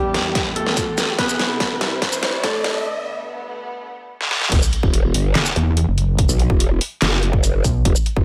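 A growling, saturated bass with a formant-filtered wobble hits up front at the drop at 4.5 seconds, soon joined by a detuned, pulsing pluck wobble bass with chorus and overdrive, in this aggressive, heavy half-time dubstep excerpt. Before the drop, a soft felt-muted upright piano with audible action noise and digital delay carries the melody over lush, bowed strings whose sustained chords pump under sidechain, while a riser and sub drop sit in the background through the build-up and a brief break at 2.9 seconds. A punchy electronic kick and a layered dubstep kit with a deep snare, handclaps, hi-hat, shaker and crash, both re-recorded in a large room, run through the piece, the kit's hats, snare, percussion and cymbals high-pass filtered, all under a light reverb.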